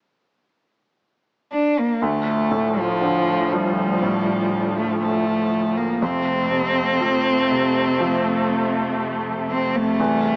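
A slow, straight 4/4 pulse at 60 BPM carries this longing, emotional pop ballad in D minor, cut from a longer piece, where a warm, bowed solo cello sits up front with vibrato and portamento, singing the melody from 1.5 seconds, before a clear, intimate grand piano with audible action noise and a distant studio string section holding sustained chords join at 2.0 seconds. The harmony moves from Dm to F at 6.0 seconds, while a lush hall reverb and the sound of a worn, warbling cassette tape with pitch drift and a small-speaker tone give the whole recording a worn, warbly character.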